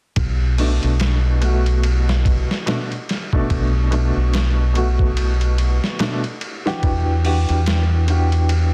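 A dense, heavily limited sound in digital ambience frames this melancholic, dark trip hop fragment in B minor at 72 BPM with a swung 16th feel, where a round, up-front fingered electric bass and a muffled, pitched-down sampler-style drum kit with thumpy kick, hi-hat, ride and snare begin at 0.2 seconds, a woody upright piano with audible action noise, tremolo and tape echo joins at 0.6 seconds, and the harmony moves from Bm7 to Em9 at 6.8 seconds.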